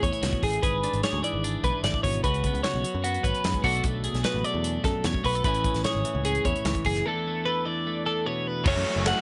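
A lightly reverberant, softly rolled-off mix opens this intricate, playful math rock and midwest emo fragment, where a bright, clean twelve-string electric guitar spins arpeggios above a warm, compressed twelve-string accompaniment, a dark, round picked bass and a punchy studio drum kit with bright cymbals, before a break at 7.1 seconds sets up a double-tracked, overdriven cranked stack guitar riff arriving at 8.6 seconds.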